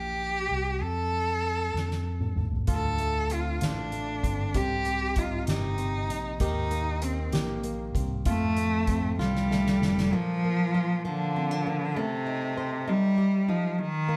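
A moderate stone-room reverb frames this live, romantic six-eight pop ballad in Bb major at 65 BPM, where an up-front, nasal bowed cello with vibrato carries the heartfelt melody over a growly fingered electric bass and a soft-mallet drum kit with a fat snare and boomy kick that enters with a fill at 1.8 s, joined at 2.7 s by a fingerpicked flamenco guitar with fresh strings and finger squeak, before bass and drums stop at 10.1 s as the passage moves to a Bb chord.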